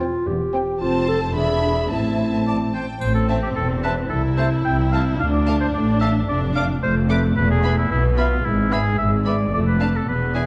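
A rich, focused violin section carries the melody high in its range in this playful, whimsical film cue in A minor, a quirky, mischievous fragment cut from a longer piece, moving at 110 BPM in a straight 2/4. A second violin line, violas and lush cello and double bass sections fill out the harmony and bass with vibrato-laden bowed ensemble tone. The soft-attack, clear clarinet adds a solo second line at the start, and a warm oboe takes over that role from 2.5 seconds with a smooth, classical-style voice. After the opening passage gives way to a new section at 3.0 seconds, a triangle with a dark sheen sits in the background for about a second. The harmony moves from C/E through F and E7 to A minor, then on through D minor and E chords, closing on a rootless Dm/F. A reverberant scoring-stage ambience and dark, warm production give the strings depth and cinematic polish.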